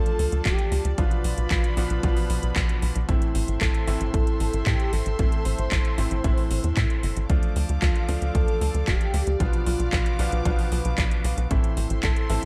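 Melodramatic and bittersweet, this short italo disco passage in A minor moves at 114 BPM in a straight 4/4, cycling through Dm, Bdim and Am. A thick, detuned unison lead carries the melody with a bold, wave-folded edge and vibrato, touched by subtle chorus and delay. Beneath it, a tight sequencer bass drives hard and up front with a nasal, plucky sawtooth bite, while a brilliant grand piano punctuates with stabs. A dark, distant studio string section sustains reedy, gut-toned chords with light vibrato. A layered house kit of handclaps and metallic hi-hats enters at 0.1 seconds, carrying overdrive and gated reverb in an otherwise dry mix, and the punchy, overdriven electronic kick joins it at 0.5 seconds.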